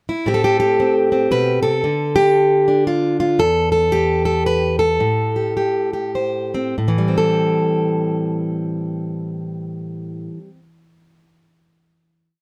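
A short folk piece in 3/4 with a gently swung lilt, haunting and intimate, played entirely by a fingerpicked plugged-in steel-string acoustic guitar sitting up front in light reverb. Rolling arpeggios open on an Am7 chord and wander through a free melody that never settles into a recurring motif, the pace slowing from 3.4 seconds. The guitar's concert tone, warm and close, lands back on Am7 and rings out as a final chord from 6.8 seconds to the end.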